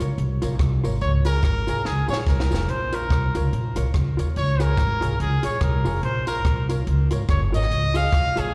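A swung 143 BPM ska groove in Db major bounces along as a woody, thumpy upright bass sits up front with a dry cocktail drum kit whose high-tuned snare and tight kick break into a short fill at 1.9 seconds, while a jingly tambourine stays in the background. A dark, clean hollow-body jazz guitar comps through plate reverb and slapback echo over chords alternating between Bbm and Db, and from 1.0 seconds a clear trumpet with light vibrato carries a cheerful, distant solo melody, its plate reverb and tape echo adding a roomy glow. The short clip, cut from a longer piece, sounds like a live gig heard through the venue's PA with recital hall reverb.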